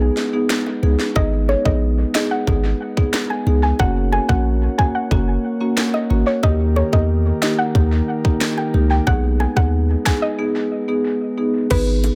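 A deep, punchy sub bass with a pitch-drop attack anchors this hypnotic, tough dancehall excerpt at 91 BPM, joined by an electronic drum kit with tight kick, sharp snare, finger snaps and rim clicks, woody marimba pumping under tape echo, soft flute-stop organ chords with tremulant, very quiet high-tuned bongos from 0.7 s, and a round, dark pluck melody with chorus and echo entering at 1.2 s, all in an echo-heavy mix with light reverb and digital ambience over chords moving from B6 through G#m, F# and D#.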